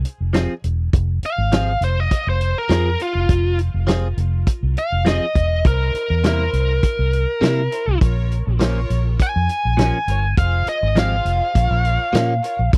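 Brooding and mournful, this straight-eighth soul blues excerpt in F harmonic minor moves at 102 BPM with a light swing, carried by a round, foam-muted fingered electric bass and a dry soul drum kit with a tight kick and a rolled-off top, while a clean, twangy direct-recorded electric guitar plays phaser-tinged stabs over changes from Fm to C7 and Bbm. A biting, overdriven lead guitar with tape echo solos up front from 1.3 seconds, and a lush, bowed string section enters softly at 5.6 seconds with sustained, vibrato-rich chords. The sound is close and dry, with little reverb, in the manner of a 1970s studio recording.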